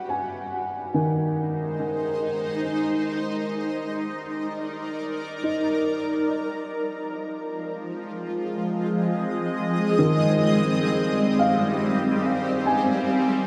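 Warm and weightless, this free-time ambient fragment, cut from a longer piece, sets a bright, shimmering pad with chorus, phaser and a granular, octave-up sheen holding slow-blooming chords from Abmaj7 through Ebmaj7, Fm7 and back to Abmaj7, while a soft, boxy felt-muted upright piano plays intimate arpeggios through tape echo from 0.1 seconds, all within a huge, wet reverb and a cassette-tape haze.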